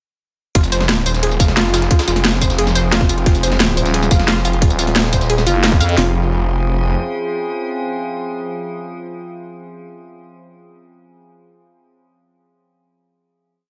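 Dark and mechanical, this technical drum and bass piece in F minor at 177 BPM bursts into its drop at 0.6 seconds, where two overdriven, up-front electronic kits with tight kick, cracking snare, bright hats and tambourine sit over a very quiet, gritty, pitched-up looped breakbeat re-recorded in a large room, while a snarling distorted sawtooth bass pumps beneath a lush, punchy 16-step arpeggiated unison pluck with delay, a thick growling FM bass joins at 3.8 seconds with chopped phrases, and an eerie, warbling, metallic drone with chorus carries the final chord until 9.4 seconds.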